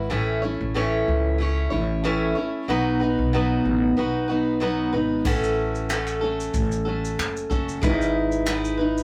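A lightly swung sixteenth-note feel in 4/4 carries this easy-going, carefree acoustic pop excerpt, with an up-front picked steel-string guitar moving through A, B, A6 and Emaj7/G# over the woody, thumpy pizzicato of a gut-strung upright bass. At 5.2 seconds a soft brush kit in a small room joins with a punchy kick, finger snaps, shaker and a crash cymbal as the second section begins. The rough rehearsal-room recording has warm saturation and a moderate studio reverb.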